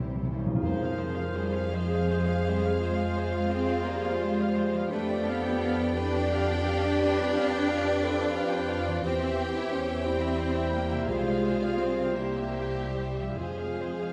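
A timpani fill opens this melancholic, solemn excerpt from a slow romantic orchestral movement in F minor, moving at 57 BPM in a rubato 12/8 over lush bowed strings (intense vibrato violas, smooth, even cellos carrying the bass, woody double basses and a background violin line) with very quiet ringing harp arpeggios, before a focused violin melody enters at 0.6 s alongside an airy, distant flute, a dark clarinet, very quiet mellow horn chords and a light-vibrato bassoon, the whole set in a wet concert hall reverb, with the timpani returning at 11.1 s.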